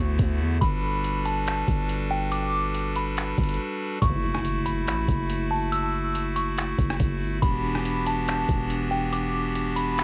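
A muffled, pitched-down sampler drum kit of thumpy kick, rim click, snaps and hi-hat enters at 0.2 s in a half-time 141 BPM pulse for this floating, dreamy cloud-rap excerpt, under a deep, sine-like 808 bass, hollow clarinet-stop pipe organ chords with baroque voicing, chiff and sidechain pumping, and a tinkling FM tine bell melody bright with chorus, phaser and tape echo, all on dry home cassette, with a brief break at 3.6 s before a very quiet electronic impact at 4.0 s as the chords move from Gmaj9 to F#m7.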